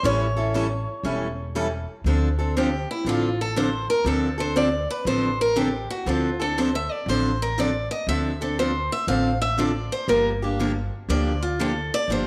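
A bright, up-front picked steel-string acoustic guitar takes a virtuosic solo from 2.0 s in this swinging jazz manouche excerpt at 119 BPM in D minor, its boxy parlour tone ranging from E4 to F5. A second picked guitar, with audible finger squeak, supplies accompaniment beneath it, while a woody, thumpy pizzicato upright bass on gut strings holds the low end as the harmony moves from A7 to Dm7 and then to Gm7 at 10.1 s. A wet echo-chamber reverb and studio ambience surround the trio.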